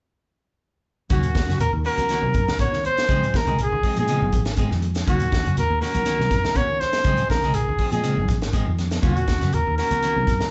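A band playing live in one room fills a large studio with moderate reverb and a dulled top end on this hypnotic, driving afrobeat excerpt in Eb dorian at 121 BPM, moving between Ebm7 and Dbmaj7 from 1.1 seconds on. Up front, a solo trumpet with vibrato and a smooth top carries a pop-style melody, while a round, punchy, foam-muted fingered bass and a tight funk kit with a high-tuned snare drive the groove. Behind them, a dark, clean guitar plays fingered arpeggios and a slightly broken-up picked guitar adds stabs, with hard-handed, damped congas and a grainy, distant shekere sitting in the background.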